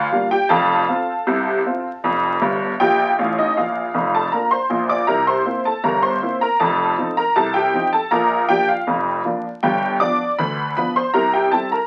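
Crackle from a very old 78 rpm record sits over a moderate studio reverb in this short, playful ragtime piano piece in Bb major, moving at a jaunty, straight 79 BPM in 2/4. A lone honky-tonk upright piano, detuned and jangly with a bright, up-front presence, covers a span from F1 to D6, tossing in a fill from 2.4 to 3.6 seconds before the harmony settles on Bb. From there it travels through C7, F7, Bb and G7 before landing on C7 at 11.1 seconds, where this fragment of a longer performance breaks off.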